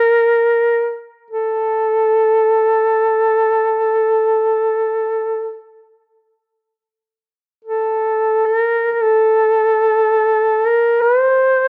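In free time, this mournful, longing fragment of Caucasian folk music in A Phrygian features a solo duduk with a warm, cassette-tape tone, sitting up front and singing between A4 and C5 with vibrato and scooped notes, its phrase stated once and then restated from 6.6 seconds, all set in a modest spring reverb and a small room on an intimate home cassette recording.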